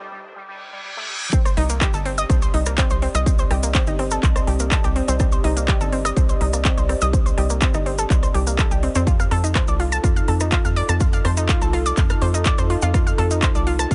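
A heavy, up-front electronic kick drives this dark, hypnotic melodic techno excerpt from 1.3 s, after a brief break where a juicy, resonant polysynth sweeps with chorus, phaser and dub echo and a reverse cymbal leads into the drop, joined by a tight, punchy sequencer bass with sidechain pumping, a round, nasal analog pluck arpeggio with tape colour and delay, a deep, moody pad entering at 2.1 s, a techno kit of smooth hats, handclaps and rim clicks, and a grainy cabasa, in a dry mix.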